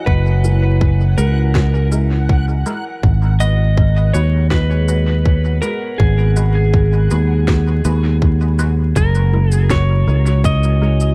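Deep and hazy, this ambient dub excerpt moves at 81 BPM in a straight 4/4, drifting from F#9 to G#m7 and back to F#9 at 9.0 seconds over an up-front fingered electric bass, a tight, tape-warm electronic kick and a woody electronic snare and shaker sent through dub echo. A dark, clean lap steel carries the slide melody with dub echo, while a moody detuned sawtooth pad with chorus and reverb holds sustained chords in the background alongside a muted, phased chord stab with filter pluck and echo. A reversed, granular swelling texture hovers until 9.0 seconds, all set in an echo-heavy mix flecked with vinyl crackle.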